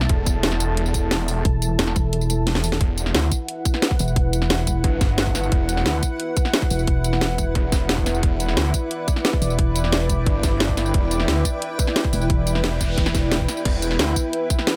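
This excerpt of dark technical drum and bass moves in a straight 4/4 with a tense, aggressive edge. A tight electronic kick and a layered kit with a cracking snare, hi-hat, tambourine and crash drive it from the opening in a dry mix, the kit sitting up front. Two basses carry the weight: a snarling distorted saw bass, growling and saturated with overdrive and sidechain pumping, and a heavy, pulsing pluck wobble bass rooted low with a mellow chorused tone. Above them a moody analog pad holds sustained chords through chorus and sidechain pumping, and from 3.6 seconds a cloudy granular pad drifts in the background, blurred by its own reverb. The kick drops out briefly before a drum fill at 2.5 seconds relaunches the drop onto an Emadd9 chord. The distorted bass falls away at 11.4 seconds, a very quiet noise sweep passes from 12.7 seconds, and the bass returns briefly as the sweep ends.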